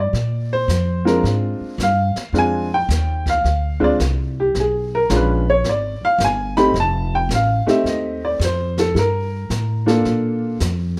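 A light reverb gives this short jazz piano trio recording an intimate, close feel, with the piano and bass sitting up front. The mood is playful and relaxed, with a swung 4/4 lilt. An upright piano with a woody, boxy tone and short sustain carries the melody through a solo that spans the whole cut, coated in plate reverb and moving over chords such as Bb9, Bdim7, F9 and Gm7. Beneath it, a pizzicato upright bass on steel strings supplies a woody, warm low end. A brushed drum kit sits further back, with a high-tuned snare, hi-hat and a boomy kick giving a natural studio-room texture. The piano falls away at 10.6 seconds, leaving bass and drums to close the fragment at 11.0 seconds.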